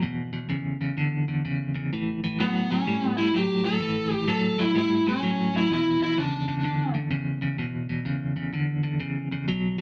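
Soulful and swaggering, this blues fragment from a longer piece moves at 127 BPM in 4/4 with a swung eighth-note feel, tuned slightly flat to A4 = 438 Hz. A clean, compressed electric guitar plays the low riff throughout, picked up front with a tremolo effect on its tone. At 2.4 seconds an overdriven lead guitar through a small cranked amp joins with a picked melody in a higher register, sitting just as far forward, and it drops out at 6.9 seconds. The harmony moves from E5 to A7 and back to E5. The band was captured playing live together in one room, and a moderate large-studio reverb gives the two guitars a warm, open space.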